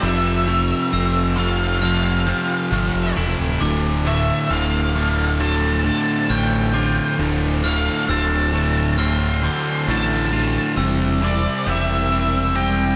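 A big arena sound steeped in lush hall reverb frames this brooding, melancholic post-rock excerpt at 67 BPM in D minor. A dark octave-fuzz lead guitar sings the melody through distortion and analog delay over up-front riffs from an overdriven semi-hollow guitar with slapback echo, backed by a thick fuzz guitar riffing in the background. A twangy, compressed clean guitar picks arpeggios with vibrato and delay, and sparkling glockenspiel arpeggios are struck with hard plastic mallets. A very quiet glassy FM pad holds ethereal chords while a growling fingered electric bass with overdrive anchors the low end, and the harmony shifts from Dm7 to C7/E at 10.8 seconds.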